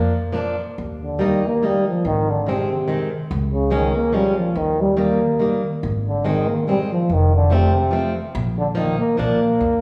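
Festive and jolly, this short cut from a longer alpine folk dance-band piece moves in a lilting three-time with a light swing. The euphonium carries the melody in a classical style with a light vibrato, its tone mellow and roomy yet sitting up front as the solo voice. Beneath it, a fingerpicked, plugged-in acoustic guitar plays swing-style accompaniment with a boxy character, stopping at 9.4 seconds while the other parts carry on to 9.8 seconds. A pizzicato upright bass on steel strings adds a woody, thumpy low end. The trio is heard from further back in the space, with a small-room ambience and a wet recital-hall reverb that lingers around the notes.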